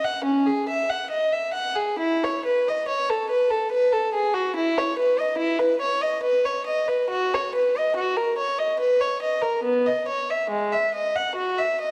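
Moving in a flexible 3/4 at around 70 BPM, this short passage from a longer baroque-style suite movement has a lilting, dance-like sway, stretched and relaxed by rubato. A single unaccompanied violin carries everything from 0.0 to 11.9 seconds, bowed by one player in period style and ranging from G#3 up to F#5. Its gut-string tone is dark and nasal with a reedy edge, yet the mood comes across as radiant. The instrument sits up front in a resonant recital hall whose reverb lingers for about 1.6 seconds. The production is mellow and dusky, with some lossy compression artefacts audible in the sound.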